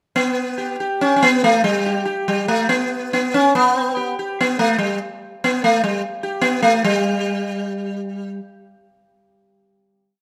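A solo sitar opens at 0.2 seconds with a composed line and improvisation in a rhythmic cycle, its plucked, buzzing tone shimmering with sympathetic strings and sitting up front in a moderate recital hall reverb. This short Indian classical piece in 4/4 feels meditative and radiant, ranging from G3 to G4 as the tempo quickens from 140 to 157 BPM. After the theme, a final note rings from 6.8 seconds to the close of this complete performance.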